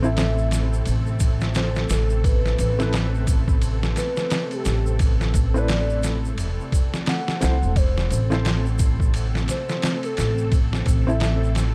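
Dark production in a small room gives this brooding, melancholic trip hop fragment, cut from a longer piece, an enclosed and intimate air. At 87 BPM in 4/4 with a swung sixteenth feel, it rests on a single Amadd9 chord in A minor. A gritty, pitched-down, sampler-style drum kit arrives at 0.2 seconds, pushed up front with overdrive and studio reverb, its thumpy kick, medium-tuned snare and ride cymbal sounding compressed. A woody pizzicato upright bass sits equally close and carries the low end, while a tube shaker ticks quietly in the background. A soft, felt-muted upright piano plays mellow accompaniment with audible action noise, short sustain, tremolo and tape echo, under a full, vintage string machine cello patch whose slow-attack chords are thickened by ensemble chorus. Above it all, a pure, breathy sine lead carries the melody, gliding with portamento and vibrato through chorus and dub echo until it stops at 11.5 seconds.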